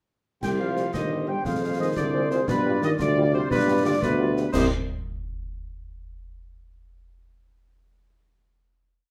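A mellow, close-miked trumpet section carries the tune up front in this stern, martial wind-band march in C minor, moving in 6/8 at 117 BPM, as a dark euphonium doubles the melody at the octave, a clear, vintage tuba holds the bass on the beats, a distant woodwind section playing chords in the rhythm of the tune and a background French horn section (entering at 0.6 s) playing after-beat chords add sustained harmony, and snare, bass drum and dark clash cymbals drive the march through a Cm–Fm–G7 progression to a final chord at 4.5 s in a moderate studio reverb.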